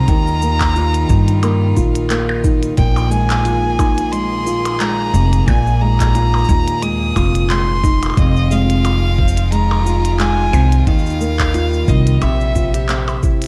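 A clear, biting violin melody with light vibrato and digital delay opens over a fingerpicked nylon-string guitar arpeggio, also delayed, and a smooth bowed string quartet in the background, soon joined by woody pizzicato upright bass up front, a muffled, thumpy pitched-down kick and a clicky minimal kit of handclaps, hi-hat, shaker and percussion blips, in this delicate, autumnal folktronica excerpt at 89 BPM with a light 16th swing, moving from Ebadd9 through Bb7sus4 and Fm7 and back to Ebadd9 before a closing C in a dark, reverberant production.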